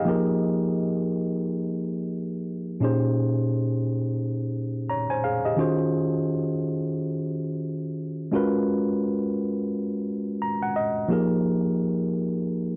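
A lone tine electric piano opens this smooth, sultry R&B fragment, its worn, slightly out-of-tune and mellow tone sitting up front through a combo amp as it moves through lush minor-eleventh chords with a gentle sixteenth-note swing. The piano adds a brief fill from 10.1 to 11.1 seconds before settling back on the opening chord. The sound is dry and close, like a 1970s studio, with just a light touch of reverb.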